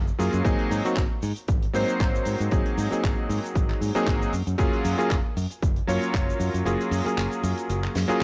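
A bright fingered electric bass opens this groovy, sunny nu-disco excerpt, its direct tone thickened by transformer saturation and set pumping by sidechain compression. A damped 70s drum kit follows with handclaps, hi-hat, shaker and a fat snare, its dry, rolled-off top softened further by cassette tape. A clear electric grand piano sits up front with a clangy low register and chorused unisons, pumping as well and trailed by tape echo, as it moves from Ab9 at 0.5 seconds to Gbmaj9. A punchy, overdriven electronic kick enters at 0.5 seconds, layered and re-recorded in a large room, and drops away after 6.3 seconds, ahead of a drum fill at 8.0 seconds. The relaxed 16th-note swing and light reverb give the whole piece a homespun cassette feel.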